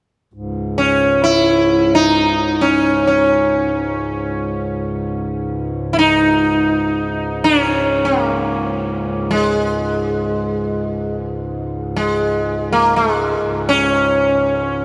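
A huge, dreamy wash of reverb with a long 4.8-second tail soaks this short Hindustani classical excerpt, cut from a longer piece. Set in raga Shivaranjani on C#, in free time and tuned to A4 = 439 Hz, it carries a solemn, longing mood. A pedal harmonium sounds a low, reedy drone from 0.3 seconds, breathing and dark beneath the melody. The sitar enters at 0.8 seconds, sitting up front with a buzzing, shimmering tone rich in sympathetic strings. Its plucked melody stays in a narrow middle range and is coloured by tape echo. Both parts sustain until the cut at 14.8 seconds.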